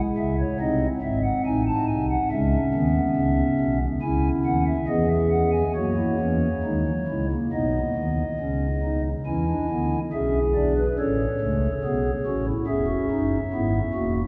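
A pipe organ on a stopped flute registration carries this baroque-style four-part fugue alone, its hollow, mellow flute stops sitting up front with a soft, romantic voicing. The mood is joyful and elegant, with a second section arriving at 5.8 seconds that moves through F#7, B, E7 and A before settling on C#m7/E. A wet cathedral reverb with a 5.5-second decay surrounds the organ in this passage, which is cut from a longer piece.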